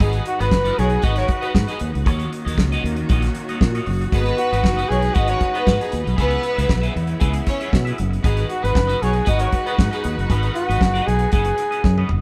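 A straight 4/4 disco groove comes from a damped, dry 70s drum kit with a fat snare and tight kick, set up front beside a round, fingered electric bass, giving this cut from a longer piece a glamorous, danceable feel. Over a phaser-treated, twangy electric guitar at the edge of break-up, a lush, distant string section holding sustained chords and mellow, punchy horn stabs, a warm jazz-style flugelhorn carries the melody up front with light vibrato. A rich, bowed violin section adds a smooth second line from 4.1 to 7.7 seconds, the band sounds live together in a stone room with moderate reverb, and a drum fill arrives at 11.8 seconds.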